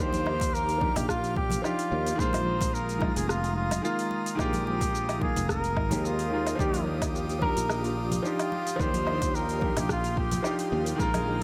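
A clear, vibrato-touched flugelhorn sings up front with delay over a worn, gritty grand piano, an airy chorused pad and a growly fretless bass in this relaxed, blissful sunset chillout groove at 109 BPM in Eb major, lightly swung on 16ths and moving from Ebmaj9 to Bb7sus4 and back, with a punchy overdriven electronic kick, a deep house kit of metallic hats, rim click, shaker and woodblock, very quiet dry congas, a ringing Celtic harp that returns at 6.6 seconds, and a faint wind-like tuned noise texture drifting in at 8.0 seconds.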